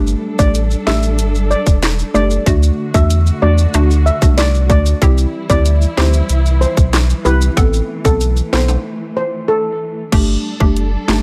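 A small room ambience gives this sunny, summery dancehall excerpt a compact, intimate sound. A warm, round sine sub bass sits up front with an electronic island pop drum kit, whose tight kick, sharp snare, dark hats, handclaps and crash cymbal carry a straight four-beat pulse. A hollow, detuned square-wave pluck with chorus bounces along as accompaniment, while a woody studio string section holds lush bowed chords that pump under sidechain. A mellow steel pan carries the melody with a shimmering metallic tone and tape echo, alongside close, dry acoustic maracas and timbales. The maracas and timbales stop at 8.8 seconds as a short break begins, and the harmony returns to Gsus2 at 10.1 seconds before the clip is cut off.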